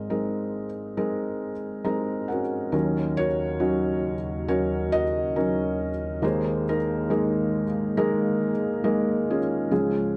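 A felt-muted upright piano carries the melody in this short excerpt from a reflective, melancholic acoustic folk-pop ballad, sounding soft, mellow and intimate, with audible action noise and a natural, up-front presence across a range from Ab1 to Bb5. The tempo is a slow 69 BPM in a straight 4/4, and the harmony moves from Abadd9 to Ebm7 at 2.7 seconds, then to Absus2/Eb. A brief piano fill between 1.4 and 2.7 seconds leads into the second section. At 3.2 seconds a dark analog pad enters beneath, holding sustained chords with a deep, moody, full-bodied tone built from detuned sawtooth and triangle layers with a sub octave, a slow attack and chorus, sitting well behind the piano in the mix. The production is dark and warm, with nothing above 10.6 kHz, and a moderate large-studio reverb gives the sound a sense of space.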